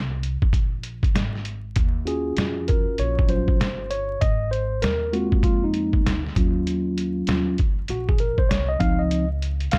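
Jazz-hop in a mellow, nocturnal mood, this swung hip hop excerpt opens with a woody pizzicato upright bass and a muffled, compressed sampler-style drum kit, with a thumpy kick, snare and hi-hat sitting up front. At 2.1 s a clean tine electric piano, heard through its built-in speakers and bathed in plate reverb, takes a solo over Ebm9, Ab69 and Dbmaj9 chords. The dark production carries a light reverb and a bed of vinyl crackle.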